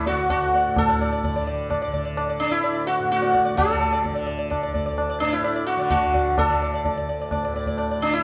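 Devotional and meditative, this short Hindustani classical fragment in triple time sets a bright, buzzing sitar up front over its shimmering sympathetic strings, with a mellow, softly plucked tanpura drone beneath and low-tuned, ringing tabla joining at 0.1 seconds, all carried by the lingering reverb of a recital hall.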